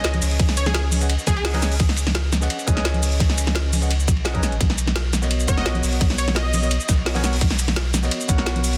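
A dense, heavily limited mix with light reverb and small-room ambience frames this lush, dreamy liquid drum and bass fragment at 171 BPM, where a deep, round sine sub bass sits up front beneath a worn, slightly out-of-tune tine electric piano with digital delay moving from C#7sus4 to Bmaj9 at 4.6 seconds, while a bright, detuned sawtooth unison lead with vibrato and a filter pluck sings short delayed phrases at 0.0 and 5.5 seconds over a tight layered electronic kick from 0.4 seconds, an electronic drum and bass kit with a woody snare and metallic hats, a dark, gritty, saturated breakbeat kit in the background, and vintage band-limited congas.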